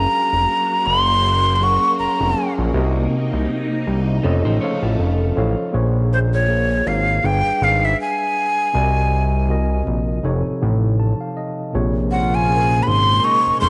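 A loose 16th-note swing at 80 BPM in 4/4 carries this soulful, sultry R&B excerpt in Bb minor, where a breathy, bright jazz flute with slapback echo sings the melody up front and takes a solo from 5.7 s over mellow tine electric piano (which adds a fill at 10.6 s), a fat, detuned analog bass, a swirling phased string machine that drops out and returns at 11.7 s, a brief slightly broken-up electric guitar line in the background, and mellow horn stabs near the close, all set in a moderate plate reverb.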